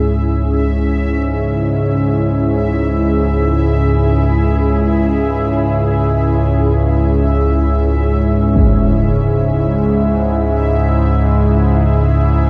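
Unfolding in free time, this desolate dark ambient drone excerpt rests on a warbling, detuned sawtooth drone held up front, beneath a deep, moody analog pad of sustained chords that fades out across the full 12.5 seconds. A resonant, bubbling texture with random filter steps fades in high above, while a bright, huge, low-pass-filtered impact strikes once at 8.6 seconds. The dreamy mix carries a cassette-tape character and is soaked in cavernous reverb.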